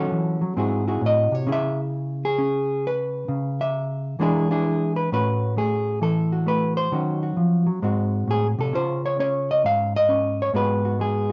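This solo jazz piece, cut from a longer work, sets a cool, moody tone at a swung 132 BPM in 4/4, in C# minor, with its tuning pitched at A4 = 437 Hz. A lone electric hollow-body jazz guitar carries the whole 11.3 seconds, fingered and clean, with a dark tone that sits up front and ranges from G#2 to E#5. The opening passage leans on a minor ii-V, moving from D#m7b5 through G#7b13 to C#m7 and then E7. The second passage begins at 5.1 seconds with A69 and continues through D#m7, G#7b9 and C#add9 before ending on G#m7. A moderate studio reverb gives the guitar some air, and the top end is rolled off above 7.5 kHz, which keeps the sound mellow and intimate.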